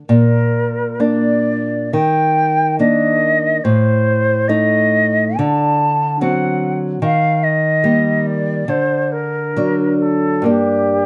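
Lightly reverberant, this brief cut from a longer romantic duo moves at a rubato 69 BPM in 4/4 with a solemn, yearning mood, as a small, fingerpicked nylon-string guitar with fresh strings lays down accompaniment from 0.0 seconds through Bb, Ebmaj7, Adim, D7, Eb and D before settling on Gm, while an airy, expressive concert flute enters at 0.1 seconds with tongued, vibrato-rich melody that sounds slightly distant yet sits up front, tuned to A4 = 441 Hz.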